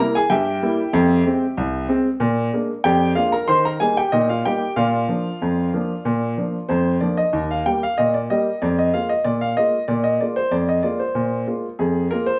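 Set in a wet studio reverb with a 0.8-second decay and heard from further back in the room, this short cut from a longer ragtime piece has a lively, cheerful mood. A clear upright piano plays alone from 0.0 to 12.4 seconds, spanning C2 to C6, with a woody, smooth, vintage tone and long sustain, sitting up front in the sound. The tempo sits at 94 BPM in a straight 2/4 metre. The opening passage moves from a rootless C7 through Fm, Bb7 and Eb to Bb. A new section begins at 7.3 seconds on Eb and moves to Bb5/F before the cut ends.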